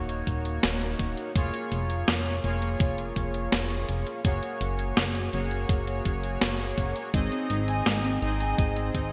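Over a straight 83 BPM pulse in 4/4, this moody, nocturnal synthwave excerpt in Bb minor sets a thumpy electronic kick and an up-front 12-bit drum machine with gated-reverb snare and hi-hat beneath glossy, sidechain-pumped synth bass and bold, fat, detuned analog synth brass stabs soaked in chorus and digital delay, moving through Ebm7, Bbm7/F and Gbadd9 to Ab, where a dark, slightly broken-up electric guitar enters with chorused arpeggios at 7.1 seconds, all bathed in a lush hall reverb and bright 1980s-style digital production.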